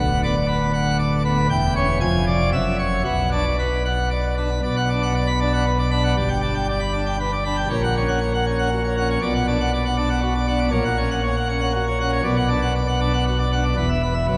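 Majestic and dramatic, this classical organ toccata unfolds in a straight triple metre and is cut from a longer piece. A solo pipe organ plays throughout on a full plenum registration, its mixtures giving the tone a brilliant, baroque voicing with a crisp chiff, and its range stretching from D1 up to B5. The organ sits up front, yet the listener seems placed further back in a church whose wet reverb carries a long 3.6-second decay. An opening passage moves through dark, tense harmonies before settling on B minor, and at 4.6 seconds a second section begins. That section opens on a G chord, then sways between F# over A# and B minor, and closes on a bare E5 at 13.8 seconds.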